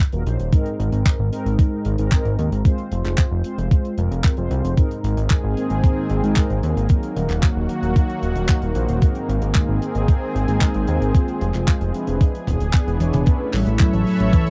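Sunny and romantic, this italo disco excerpt moves at 113 BPM in a straight 4/4, centred on Ab mixolydian. A thumpy, sampler-style electronic kick sits up front alongside a tight, airy acoustic funk kit of handclaps, hi-hat and toms, while a fat, detuned sawtooth bass with tube saturation and filter sweeps anchors the low end. Mellow synth brass stabs, round and dark with ring modulation, carry chorus, tremolo, tape echo and a vintage 12-bit sampler grit as the chords cycle through Ebm, Abadd9 and Fm. At 5.2 seconds a lush, slow-attack unison pad joins with sustained chorused chords. An E7 at 12.2 seconds and a drum fill at 13.0 seconds lead into a brief new section on Aadd9. There, at 13.5 seconds, a soft octave-layered lead with a sub octave enters, coloured by chorus, phaser and cassette tape. The sound is dry and close, like a 1970s-style studio room with little reverb.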